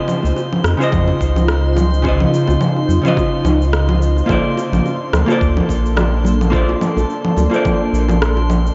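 Relaxed and smooth, this sunset chillout excerpt moves at 107 BPM in 4/4 with a gentle 16th-note swing, cut from a longer piece and resting on two chords, Dbmaj9 and Bbmaj7 at 4.3 seconds. Up front, a dark, clean hollow-body jazz guitar picks out the accompaniment through tape echo, while a round sine sub bass sits deep and prominent beneath it. A shimmering, ethereal pad with octave-up shimmer and a granular, evolving character holds sustained chords through chorus, phaser and its own reverb, and a faint, glassy texture of drifting overtones hovers high above. The rhythm comes from overdriven, layered electronic congas, cabasa and rim click, joined at 0.9 seconds by a gritty, thumpy sampler-style kick, with very quiet acoustic congas and bongos played with soft hands underneath. The whole mix is dreamy and soaked in a moderate cathedral reverb, its top end rolled off for a hazy, muted glow.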